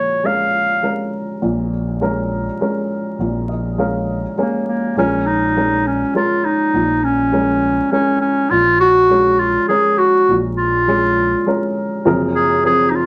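A reflective, heartbroken acoustic folk-pop ballad in Bb minor at 102 BPM in 3/4 opens with a clear, classical-style clarinet solo placed up front over a dark, woody upright piano that sounds intimate and slightly detuned, its action noise audible. A round, amped electric bass enters at 1.4 seconds, and the clarinet falls silent briefly before returning at 4.4 seconds to carry the melody as the harmony moves from Bbm7 to Gbmaj9#11. Moderate studio reverb and a layer of vinyl crackle give the recording a gently aged, roomy character.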